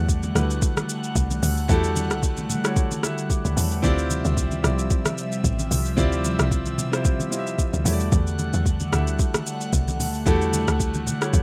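A woody, punchy log drum bass anchors this soulful, deep amapiano excerpt at 112 BPM with a swung 16th-note feel, sitting beneath a crisp, overdriven R&B drum kit of soft kick, hi-hat, rim click and shaker placed up front. An intimate concert grand piano with audible action noise provides accompaniment, while an airy, breathy pad treated with chorus, phaser and sidechain pumping sustains chords moving from Em11 to Dm11 and back, and damped, low-tuned congas murmur in the background. The sound is dry and raw, like a rough home demo, across the 11.4-second span.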